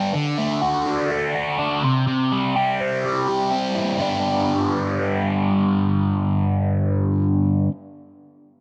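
Lightly reverberant and hazy, this short hypnotic rock cut at 124 BPM in G major features a single dark, overdriven electric guitar, picked, double-tracked and up front with a phaser, playing a riff between G2 and G4 over D and C5 chords before a new section on G begins at 4.0 seconds.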